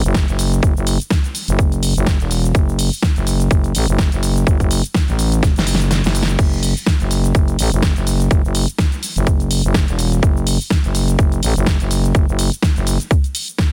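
Swaggering and gritty, this bass house excerpt at 125 BPM in F# minor swings its 16ths around a growling, thick FM bass with tube saturation and sidechain pumping, a tight, up-front electronic kick, and a big-room dance kit of crash, hi-hat, shaker and a huge snare, all set in a digital ambience under a dense, heavily limited master, with a drum fill from 5.4 to 6.4 seconds during which the kick drops out from 5.9 seconds.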